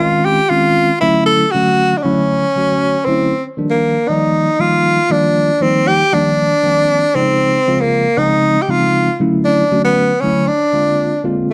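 Funky and bright, this short jazz cut from a longer piece moves at 117 BPM in 4/4, with a light swing on the sixteenths and tuning set to A4 = 439 Hz. A clear tenor saxophone carries the solo melody up front for the full 11.5 seconds, staying between Bb3 and A4 and shaping its phrases with vibrato and scooped notes in a jazz style. Beside it, a tine electric piano with a bright, clean tone plays accompaniment up front from Db3 to D5, heard through its built-in speakers and colored by a phaser and plate reverb. The saxophone also sits in plate reverb, and a moderate club ambience surrounds the pair within a dark, warm production. The harmony glides through lush major ninth chords, Dbmaj9, Dmaj9 and Ebmaj9, before turning to Bb7 at 10.5 seconds.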